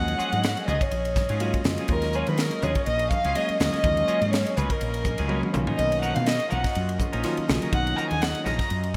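Nocturnal and driving, this excerpt of electric jazz fusion at 123 BPM in Eb minor sets an up-front dark, woody violin melody with vibrato over barky, bell-like tine electric piano with phaser, a round fretless bass, background chamber strings with gut-string tone, bright picked semi-hollow guitar stabs with analog chorus, a crisp fusion drum kit with gated reverb, a punchy kick and a high-tuned snare, and ringing background congas, all in a bright 1980s-style digital production with plate reverb, as electric piano and drum fills near 5.1 seconds lead the Ebm11 harmony into Bmaj9#11.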